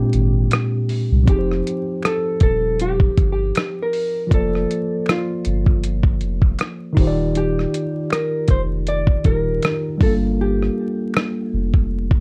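A swung 4/4 groove at 79 BPM sets a dreamy, mellow lo-fi hip hop mood in Bb major, heard in this short cut from a longer piece. A dark, clean hollow-body jazz guitar carries the picked melody through a low-pass filter, while a worn, slightly out-of-tune tine electric piano supplies chords with cassette tape colour and its own filtering. Beneath them a soft, round dub sub bass sits deep and sustained, and a gritty, compressed sampler-style drum kit brings a thumpy kick, hi-hat and rim click from 0.1 seconds, with very quiet, close finger snaps joining at 0.5 seconds. A Bb13 chord sounds over the opening break, after which the progression moves through Fsus2, Bbmaj9/F and Ebmaj7 to Gm9, and the hi-hats drop out from 10.4 seconds. The dark, warm production adds light reverb and vinyl crackle.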